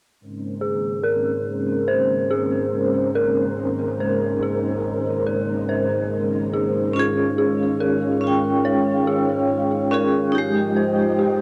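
A metallic, ringing vibraphone played with medium hard mallets comes up front at 6.9 seconds, its airy tone roughened by 12-bit sampler grit, tremolo and tape echo. Around it, this hypnotic, cinematic trip hop fragment rests on a string machine voicing cellos, whose full sub-octave sawtooth chords enter with a slow attack and hang on a long release, thickened by ensemble chorus and a moving notch that lends them a dark, warbling vintage cast. From 0.6 seconds a detuned FM synth bell adds eerie, inharmonic arpeggios that strike quickly and decay, shaded by chorus, phaser, low-pass filtering, tape echo and the same sampler grit. The strings and the bell each carry a filter sweep throughout, while the harmony moves from Bbm11 to Eb9sus4 and then Fm9. A swung sixteenth-note feel and a light, small-room reverb keep the dry, gritty recording close at hand.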